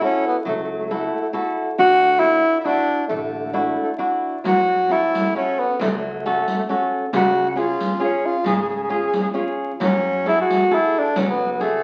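A triple metre, stretched and loosened by a rubato feel, carries this wistful, passionate Italian folk serenade, a fragment cut from a longer piece. Up front, a warm tenor saxophone sings the solo melody in a classical style with vibrato, while an acoustic flamenco guitar on fresh strings is fingerpicked close beside it. From 0.5 s, a woody pizzicato upright bass on steel strings sits low in the background, and at 4.5 s a riq joins from a distance, its dark jingles played with soft hands in a large room. The harmony drifts from F#m7 through Dadd9, F#m and C# before settling on F#madd9. A wet, large studio reverb surrounds the players, and the crackle of a very old 78 rpm record gives the whole sound an aged, faded patina.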